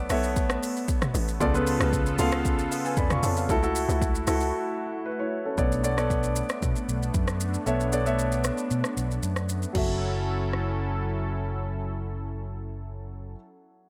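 A straight 4/4 amapiano groove at 115 BPM in F# minor sets a hypnotic, deep mood, driven by a layered deep house drum kit with a deep kick, smooth hats, rim clicks, shaker, toms and crash cymbal. A hollow, bouncy log drum bass opens beneath an up-front grand piano and a warm, detuned sawtooth pad treated with chorus, then stops at 4.5 s for a short break before a dark, round fingered electric bass enters at 5.6 s. The dry sound moves through chords such as Bm9 and C#7b9b13, and the drums end at 10.7 s while piano, pad and electric bass carry on in this cut from a longer piece.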